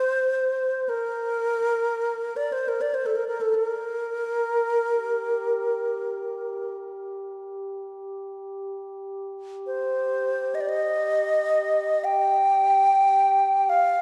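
A bright wooden-headed alto flute opens the recording at 0.0 seconds, carrying an airy, crisp melody between A4 and G5 with gentle vibrato and a delay that trails each phrase. This is calm, peaceful world meditation music in free time, a short section cut from a longer piece and tuned to A4 = 439 Hz. At 4.8 seconds a glass harmonica enters far beneath the flute, holding a soft, slowly blooming G4 that adds a pure, ethereal texture with a faint beating shimmer. The flute stays up front with lifted highs, while the glass harmonica sits dark and smooth in the background until it stops at 13.8 seconds. A wet recital hall reverb and a dark, warm production give the whole passage a spacious, tranquil glow.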